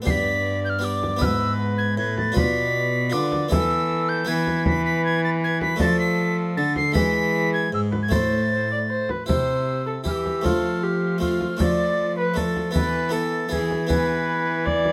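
Recorded close and dry with little reverb, this short fragment of a courtly yet rustic Renaissance-style consort dance in triple time has a detailed, intimate presence. A hollow, chiffy soprano recorder with vibrato carries the tune high above a reedy gut-string viola on the second line and an up-front, smooth-topped cello bass, while a brilliant, plucked French-style harpsichord fills out the harmony and a deep frame drum, struck with soft hands, adds weight. After an opening phrase that reaches E and then A minor, a new passage begins at 9.3 s, moving through C and F before closing on Esus4 and E.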